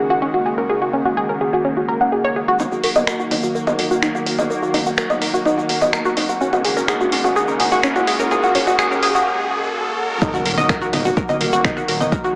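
Melodic techno at 126 BPM in Eb minor, driving and hypnotic, where a lush, airy unison pad, a round, nasal analog pluck arpeggio and a tense, string-like drone all pump against the sidechain from the start, before a metallic-hatted drum kit with congas and finger snaps and a grainy egg shaker arrive at 2.6 seconds as a filter sweep begins on the arpeggio, joined by a deep, rumbling detuned saw bass at 2.8 seconds. A background riser builds through a short break, and a punchy, tape-warm kick and impact land on the drop at 10.2 seconds, all soaked in spring reverb and echo with a small-speaker sound.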